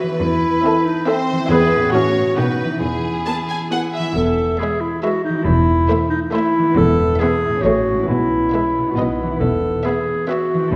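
A clear solo clarinet sits up front in a classical style, carrying a second line through this short cut from a longer playful, whimsical film cue in E major at 137 BPM in 3/4 with a straight feel. Above it, a close violin section sings the melody with smooth, even vibrato, while a second violin group adds a focused line and a distant, expressive viola section supplies the accompaniment. A mellow concert harp plays ringing, fingerpicked arpeggios, and a lush cello section holds the bass from 0.2 seconds, joined at 4.2 seconds by a rich double bass section with light vibrato as the opening phrase begins again. The harmony moves through Am/E, E, F#m/A and B before settling back on E. Wet scoring stage reverb places the ensemble further back in the room, giving the cue a mischievous, magical air.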